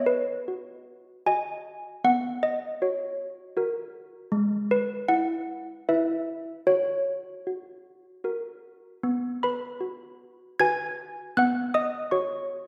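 A straight, unhurried pulse in 3/4 at 77 BPM carries this short classical tune for handbells in B major, tuned to A4 = 439 Hz, with a mood that is both festive and serene. Malleted handbells play alone from 0.0 to 12.7 seconds, ranging from G#3 up to G#6, their bell-like notes struck with medium clappers and kept damped and short. The bells sound close-miked, dry and full, sitting up front, while the room around them carries a wet scoring-stage reverb with a 1.6-second decay and a sense of being heard from further back. The harmony moves from B through F#/B, E/G# and F#, then the opening phrase returns at 9.0 seconds over B5 and F#5/B. Cut from a longer piece, the passage ends on that returning phrase.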